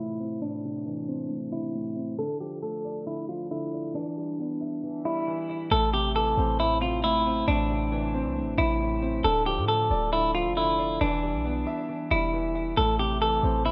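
Dark and menacing, this half-time trap and hip hop fragment opens with a filter sweep over a mellow, long-sustaining baby grand piano and an up-front, picked semi-hollow electric guitar melody that sounds clean and compressed, bathed in spring reverb, digital delay and a low-pass filter. At 5.7 seconds a deep, boomy sine-toned 808-style bass enters with a fast attack and decaying notes. The small room ambience and low-pass filtering give it the rough feel of a home demo as the harmony cycles through Am, Dm and Em.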